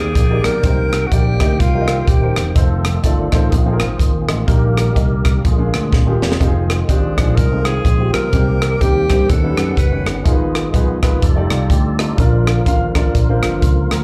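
A breathy, close-miked alto saxophone opens this uplifting, reverent slice of uptempo gospel, its whispered, scooped phrases carrying a jazz-style vibrato over a dark, woody upright piano, a fat tonewheel organ and a round, punchy fingered electric bass, with a crisp fusion drum kit joining a moment later. The organ holds sustained chords with a percussive third-harmonic attack, audible key click, light overdrive, chorus vibrato and a slowly turning rotary speaker, while the mellow, vintage-sounding piano fills in the accompaniment. The drums sit up front with a high-tuned snare, punchy kick, hi-hat and rim click, all in an airy, polished studio-room sound. A short drum fill arrives at 5.9 seconds, and the saxophone returns at 6.9 seconds for another intimate phrase. The swung feel and rich harmony, moving through altered and extended chords such as Eb7alt and F13, give the passage a churchy lift. 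The whole performance comes across as a live gig heard through the venue's PA, touched by club reverb, with plate reverb and slapback echo on the saxophone and piano.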